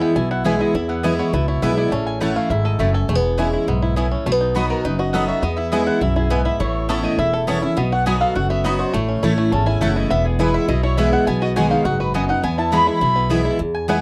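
A mellow, picked mandolin carries the melody through this joyful, virtuosic bluegrass excerpt in E major at a brisk 205 BPM, with a second mandolin adding stabs touched by slapback echo from 0.4 seconds. Up front, a bright, full-bodied jumbo steel-string guitar with audible finger squeak and a thumpy gut-string upright bass drive the straight 4/4 feel, while a twangy banjo played with fingerpicks supplies arpeggios. From 4.7 seconds a very quiet, distant fiddle, bowed sul tasto with light vibrato, adds a dark second line, and the recording has a dry, close 1970s-style studio sound.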